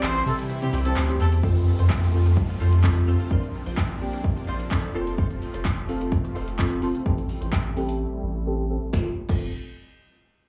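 A round, dark analog bass and an overdriven deep house drum kit with a deep kick, punchy snare and metallic hats drive this upbeat, summery dance-pop excerpt at 128 BPM in F major. They carry a soft, phased chord stab with a filter sweep, while a lush detuned supersaw pad and a clean, direct-recorded electric guitar riff sit in the background. A distant horn section with light vibrato plays the melody only until 1.3 seconds, a downlifter runs from 1.4 to 5.2 seconds, and crisp, very quiet group handclaps return at 5.7 seconds, all heard through a venue's PA with club reverb.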